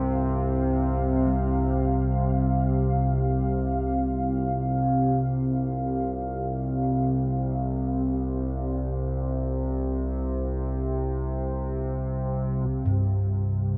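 Dark and cavernous, this dark ambient drone drifts in free time, cut from a longer piece. An up-front analog drone, evolving and resonant with pulse-width modulation and chorus, holds the low register beneath a deep, moody pad of detuned sawtooth unison and sine sub octave, softened by chorus and its own reverb, while bronze gamelan-type bossed gongs, metallic and beating, trace arpeggios through tape echo in the background. A huge ambient reverb and cassette tape colour the whole space, and the pad stops at 12.7 seconds, leaving the drone and gongs to carry on until 13.8 seconds.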